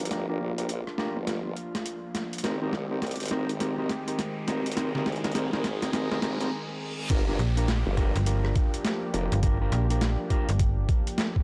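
A dry, gritty cassette-tape hardware sound with faint mains hum and light digital ambience frames this swaggering glitch hop excerpt in swung 4/4, where a smooth, detuned sawtooth pad, dark, clean fingered electric guitar stabs with tape echo, a chorused formant-sweep wobble bass and an overdriven, pitched-down boom bap sampler kit with a high-tuned snare build over a background riser, reverse cymbal and downlifter until the drop at 7.1 s brings in a thumpy, up-front kick, followed moments later by a snappy, metallic FM slap-style bass.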